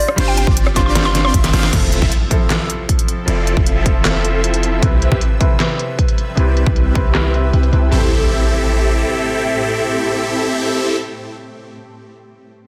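Huge, detuned supersaw chords dominate this emotional, dreamy future bass excerpt, pumping through a phaser, low-pass filter and digital delay, with a filter sweep across the middle stretch. Beneath them, a deep, boomy 808-style bass with a sine tone sits up front alongside a punchy electronic kick. A layered dubstep kit adds a deep snare, crisp filtered hats, handclaps, rim clicks and crash cymbal in a half-time feel, and its drums are also swept by a filter after a fill at 1.4 seconds. The opening drop carries a woody, warbling FM mallet pluck melody with chorus and delay, joined by a very quiet, airy lead playing arpeggios, while a clear baby grand piano accompanies throughout and carries on alone to the close at 12.7 seconds. From 3.0 seconds a shimmering, ethereal pad with a slow attack and built-in reverb glows in the background, and a faint electronic impact marks the section changes. 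The harmony moves from G7sus4 through Fmaj7 and Cmaj7 to Am7, and the dense, heavily limited master carries light reverb.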